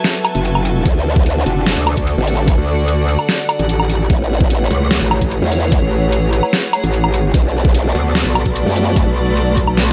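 A growling, formant-filtered bass sits up front in this short cut from a heavy wobble dubstep track, entering at 0.9 seconds beside a metallic FM wobble bass that arrives at 0.3 seconds, both saturated, compressed and thickened with chorus and overdrive. The mood is aggressive and chaotic at 148 BPM in a half-time 4/4 feel, moving through F#madd9, D, Aadd9 and Bm7. An overdriven electronic kick with a knocking punch joins at 0.9 seconds, while a layered dubstep kit of deep snare, bright hi-hats and woodblock drives from the start and closes with a fill at 9.8 seconds. Beneath the onslaught, a dark studio string section bowed sul tasto holds soft-attack chords with light vibrato and a smooth top, pumping against the sidechain. A cloudy, detuned granular pad drifts in the background with slow attack, long release and its own reverb, also pumping. The whole piece sits in a digital ambience with a dull upper edge.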